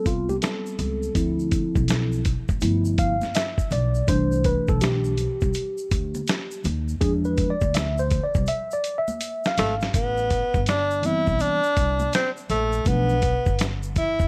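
Jazz-hop cut from a longer piece, nocturnal and cool at 82 BPM in A minor with a swung sixteenth feel, as a mellow tine electric piano with analog chorus takes a solo over Am9, Dm7, G13 and C6 changes while a woody pizzicato upright bass joins a gritty, compressed sampler-style drum kit whose thumpy kick sits up front. Bright tube shaker and congas with hard hands stay in the background, and a drum fill from 8.5 to 9.9 seconds leads into the next section. At 9.6 seconds a smooth, subtoned tenor saxophone enters with a vibrato-laden jazz solo over Am9 and Bm7b5, all framed by studio ambience.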